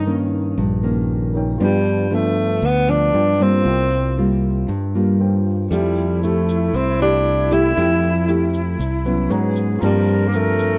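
A breezy, sunny bossa nova in a dry, close 1970s-style studio sound, with a mellow tenor saxophone carrying the melody up front, its subtone, scooped notes and light vibrato touched by a roomy distance. A thumb-plucked classical nylon-string guitar and a growly, amped fingered electric bass support it, while a grand piano sits intimately in the background with audible action noise. At 5.7 seconds a breathy, slightly unsteady metal flute adds a soft-attacked second line and a grainy tube shaker joins in.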